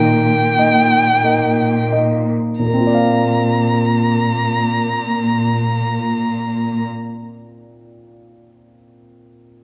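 Tender and hopeful, this brief cinematic excerpt in Bb major moves at a slow, rubato 44 BPM in 4/4, easing into a slowdown over its opening 2.6 seconds as the harmony passes from Eb/Bb to Bbadd9. A single bowed violin carries the melody high in its range with close, focused vibrato, while a lush symphonic cello section holds a low Bb beneath it and a concert grand piano with deep bass and long sustain supplies the accompaniment. The strings fall away at 6.9 seconds, leaving the open-sounding piano to ring on alone until 9.6 seconds in a moderate scoring-stage reverb.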